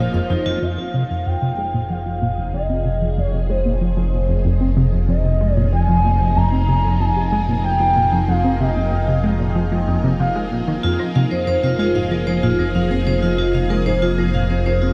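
A tight, driving sequenced synth riff pulses at 94 BPM in straight 4/4, its detuned sawtooth tone plucked by a fast filter and coloured by chorus, phaser, cassette tape and delay. This excerpt from a longer piece of ambient, sequencer-driven space music sits in F minor on a held Fm chord, with a cosmic, mysterious mood and a huge ambient reverb that places it in a vast, echoing space. Underneath, a fat, thick analog bass holds a wave-folded low F with a sweeping filter, while a phased string machine fades in with swirling, vintage, warbling chords thickened by ensemble chorus and shimmer reverb. A smooth, expressive synth lead carries the melody with vibrato, lush chorus, cassette tape, delay and shimmer reverb until 10.8 s. At that point a metallic, ringing vibraphone struck with hard mallets, heard only briefly at the very start, returns and takes over with arpeggios in a boxy small-room sound, up front and washed with shimmer reverb and delay. 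From 1.2 s a bright, resonant stepped-filter texture also fades in, bubbling softly in the background with random filter steps and a long release.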